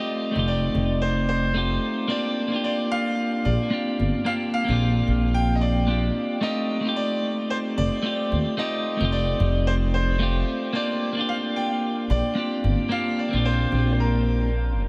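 A bright, brilliant concert grand piano carries the melody over a clean, compressed electric guitar picking out the accompaniment, both touched with tape echo and sitting up front in this blissful sunset chillout excerpt. The woody upright bass enters at 0.4 seconds with pizzicato steel strings, while a gentle swing on the sixteenths rocks between F7 and Bb6 chords. The dreamy mix is soaked in a huge ambient reverb that lets the piano's long sustain hang in the air, with the bass closing at 14.9 seconds.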